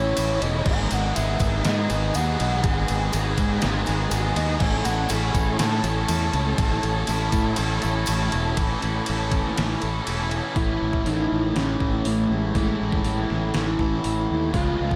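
Hazy and wistful, this short excerpt of shoegaze-tinged dream-pop rock moves in a straight 4/4, soaked in a lush hall reverb with a digital ambience. A soft, octave-layered synth lead carries the melody with chorus, vibrato and delay, over two overdriven guitar riffs, one biting and bright with reverse reverb and one dark and compressed in the background with ensemble chorus. An up-front, fuzzy fingered bass and a detuned 8-bit drum machine with a thumpy kick and fat snare anchor the sound, joined by a very quiet jingly tambourine until 8.4 seconds, while the kick and snare drop out briefly before the harmony settles onto an A major seventh at 10.6 seconds.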